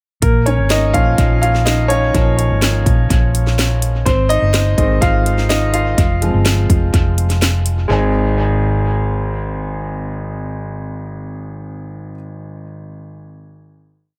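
A driving straight pop backbeat from an up-front, layered house kit with a punchy kick, cracking snare and metallic hats, both kit and piano touched with analog delay, powers this short, uplifting, anthemic piano-driven pop piece. A clear baby grand with long sustain takes the lead in close-voiced eighth-note chords over a dark, round, sustained hollow-body bass line, until the kit drops out at 7.8 seconds and piano and bass settle onto a final Ab chord from 7.9 seconds in an echo-heavy mix with light reverb.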